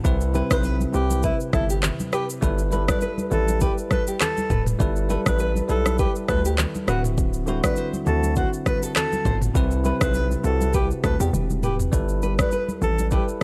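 A breathy, whispered alto saxophone with light vibrato and scooped notes carries the melody over a sunny, romantic afrobeats groove, set on a punchy 808-style bass, an up-front afro-pop kit with a deep kick, handclaps, rim clicks and shaker, bell-like electric piano chords, a fingerpicked nylon-string guitar riff in tape echo, and soft-handed congas, all in a small, gritty room, with a drum fill at 11.3 seconds leading into the closing bars of this excerpt from a longer piece.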